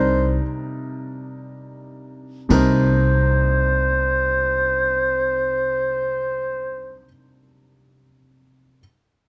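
Jazz ballad in free time and C minor, wistful and melancholic, where a raspy, growling clarinet sings a vibrato-laden solo with scooped notes up front over a clear, short-sustained baby grand piano and a woody, thumpy pizzicato upright bass on a Cm9 chord, while distant brushed drums add a dark cymbal crash and boomy kick at 2.5 seconds, the piano ringing on alone after the others stop at 7.0 seconds, all in light reverb.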